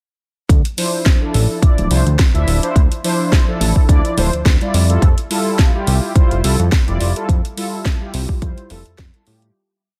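Cosmic and sensual, this short nu-disco groove at 106 BPM in D minor swings its sixteenths lightly over a punchy four-on-the-floor electronic kick sitting up front, while a house kit adds a cracking snare on the disco backbeat and metallic closed and open hats. A fat, detuned sawtooth analog bass drives a funky syncopated line with a filter sweep, and a mellow, round synth brass pumps dotted-rhythm chords in drop-2 voicings, dark and brassy with chorus, vibrato and slapback echo, moving from Dm9 to Fmaj9 at 4.7 seconds. The dense, heavily limited modern mix sits in a digital ambience, and the groove fades out from 6.5 seconds to its close at 9.6.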